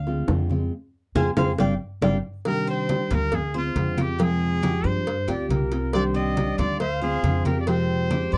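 A clear, punchy trumpet carries the melody of this danceable, sultry slice of Cuban son and guajira in C minor, entering at 2.5 seconds with a light vibrato and a distant, roomy, pop-style tone. Before it arrives, the Cuban tres takes a solo, picking metallic arpeggios on its doubled strings as the band punctuates it with accents. Underneath, a full-bodied nylon-string guitar sits up front, fingerpicked with fresh strings and audible finger squeak. The upright bass is pizzicato, woody and growly, and the rest of the rhythm section pairs tight, high-tuned bongos and cowbell struck with hard hands against damped, low-tuned congas that sound thin-skinned and saturated in the background. An airy silver concert flute adds a straight-toned second line with a crisp attack from 5.3 to 7.6 seconds. The tempo is 138 BPM in a straight 4/4, and the dry, close 1970s-style studio sound keeps the cut intimate as the harmony cycles through Dm7b5, Fm and G7sus4 toward Cmadd9.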